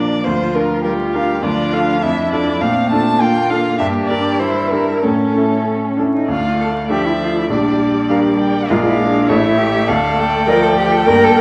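In a straight, quick two-four pulse, this stormy, dramatic classical-period movement for piano quintet unfolds as a short cut from a longer work, moving into a second section at 6.3 seconds. A rich, expressive first violin carries the melody with vibrato and portamento from a distance, while a smooth, even second violin and a clear, distant cello weave supporting lines beneath it. A bright, brilliant baby grand piano sits up front with long sustain, a focused viola murmurs in the background, and the whole ensemble rings in a wet recital hall beneath a layer of vinyl crackle.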